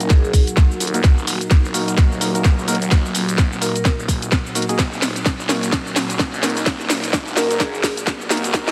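Swaggering and aggressive, this short cut of bass house moves in 4/4 with a swung sixteenth feel, building up over its full length as filter sweeps run across the deep, moody ambient pad and a drum fill runs throughout. A tight electronic kick sits up front beside a garage kit of cracking snare, warm hi-hats and cabasa, both with a small-room character. Underneath, a thick, swirling detuned saw bass with phaser, tube saturation and a high-pass filter pumps against the kick from the background, while the dark, full-bodied pad carries sustained chords with chorus, reverb and the same pumping. From 0.9 seconds a hollow, percussive organ stab, wave-folded and chorused with digital delay, punctuates the groove, and a metallic, ringing vibraphone with slow motor vibrato drops brief delayed melodic touches in the background. A very quiet, warbling lo-fi pad adds nostalgic texture, a barely audible riser creeps in at 7.8 seconds, and the whole sits in a lush hall reverb under a dense, heavily limited modern master.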